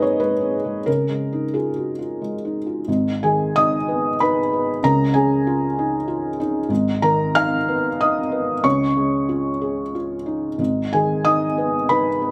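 A felt-muted upright piano plays alone from the first moment, its mellow, hushed tone sitting up front with the soft clatter of its action clearly audible, in a reflective, intimate piece of neoclassical minimalist piano. At 93 BPM in 3/4 with a rubato feel, it sways gently between G#m and C#add9 in G# dorian, ranging from G#1 up to E#6. A light reverb lends a natural sense of space to this 12.3-second passage cut from a longer piece, where a brief opening phrase gives way to a restatement at 2.9 seconds.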